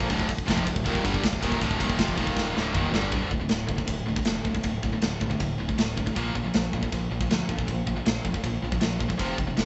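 Heavy metal in D phrygian, this dark, epic fragment of a longer piece drives at 158 BPM in a straight 4/4. An acoustic drum kit sits up front with a mid-forward, big-room sound, a tight kick and a medium-tuned snare, working across ride cymbal and toms, and it plays a fill from 2.4 s into the change at 3.1 s. Behind it, three bright, picked electric guitars play the riff in the same low register: a high-gain distorted guitar, a tight distorted guitar, and a double-tracked fuzz guitar that drops out at 3.1 s. An overdriven electric bass, dark and round with a growling picked tone, holds the low end beneath them. The harmony moves from Dm through Eb5 and D5 before settling on Bb5 in the second section. The band sounds as if it is playing live together in a stone room with moderate reverb, and the top end is rolled off for a dense, heavy mix.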